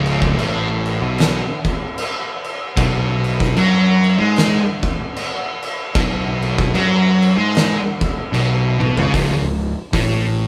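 This stoner and doom metal passage, cut from a longer piece, moves at a slow, swung crawl with a sludgy, heavy mood. Two thick fuzz guitars carry the riff in the low register throughout, both distorted and picked, one with a warm tone and the other darker. Beneath them a fingered electric bass adds an overdriven, growly fuzz, heard both direct and through an amp. An oversized, low-tuned acoustic drum kit sits up front with a punchy kick, a fat snare, toms, hi-hat and shadowy crash cymbals, its sound mid-forward with a rolled-off top in a bright stone room. A drum fill at 8.7 seconds leads into a brief new section at 9.1 seconds as the harmony shifts. The band sounds as if it is playing live together in one room, wrapped in a moderate studio reverb.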